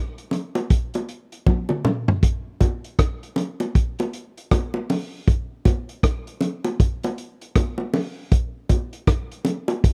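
A vintage drum kit opens this reggae cut at 0.2 s, joined almost at once by bongos, settling into a meditative, serious groove at 79 BPM in 4/4 with a swung sixteenth-note feel. The kit sounds acoustic, muffled and lo-fi, its rolled-off top and tight kick sitting up front as hi-hat, kick, rim click and toms carry the pulse. A short drum fill breaks the pattern from 1.5 to 2.2 s before the groove resumes. The bongos are round and low-tuned, struck with hard hands and placed up front, sitting a little lower in level than the kit. Both parts carry a small-room character, and the dry, close 1970s-style studio sound gives this brief fragment of a longer piece an intimate, earthy presence through to 9.9 s.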